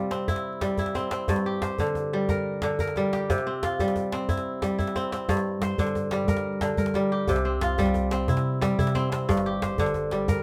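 A bright, ringing kora opens with crisp fingerpicked arpeggios up front, joined almost at once by a tight, cracking djembe with metal rattles, close and dry, while a dark, round hollow-body electric bass enters at 5.3 seconds beneath the hypnotic, reflective West African groove in G dorian at 120 BPM in 12/8, alternating between C and G minor under light reverb in this short cut from a longer piece.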